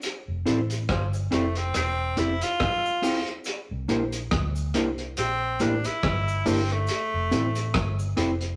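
Tender and sweet, this slow lovers rock reggae fragment at 70 BPM in F major sways on a swung sixteenth feel, moving from Fmaj7 to C7 and back. A thuddy, cloth-damped drum kit with tape echo sits up front with a tight kick, hi-hat and rim click beside a cabasa in the background, and a round, foam-muted fingered bass soon joins them. A worn, slightly out-of-tune tine electric piano and dark electric guitar stabs with a vibrato effect fill the middle, while an edgy tenor saxophone carries the melody from 0.9 seconds, all set in a rough rehearsal-room sound with stone room reverb and tube saturation.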